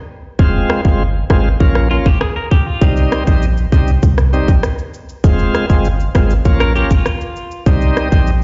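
Heard through a big sound system in a bare stone room, with little reverb and a dark top end, this dancehall excerpt moves at 99 BPM in C phrygian with a bouncy, hypnotic pull. A tight electronic island pop drum kit of kick, rim click and shaker, dusted with vintage 12-bit sampler grit, sits up front over a deep, round sine sub bass. A full, shouting tonewheel organ with light overdrive and slow rotary speaker carries the Fm, Bbm and Cm chords, while a clean, twangy electric guitar adds compressed picked arpeggios with tape echo at 1.9 seconds and again at 6.6 seconds.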